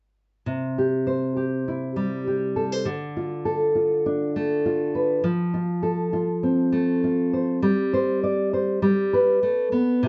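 Nostalgic and pastoral, this short folk piece for solo fingerstyle acoustic guitar moves at an unhurried 100 BPM in a straight 4/4, settled in C major. A single nylon-string guitar carries everything, entering at 0.5 seconds and ringing until 10.1 seconds. Its classical, thumb-plucked tone sits up front, with a dark body and the crisp bite of fresh strings. The harmony travels from C through Dm and F before pausing on Gsus4 and resolving to G near the close. The playing spans from the low C3 register up to D5, giving the lone instrument reach from a grounded low end to its upper register. A moderate small-room reverb lends a gentle, intimate halo, while the rolled-off top end keeps the sound soft and mellow, as if this brief passage were lifted from a longer, reflective piece.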